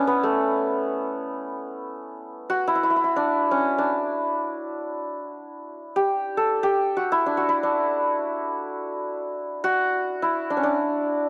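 Festive yet stately, this brief excerpt of Persian modal music unfolds in free time, cut from a longer piece. A solo santur carries it alone, its hammered strings shimmering and ringing up front in a close, dry studio sound with light reverb. The santur plays from 0.0 to 11.3 seconds, staying within a compact middle range.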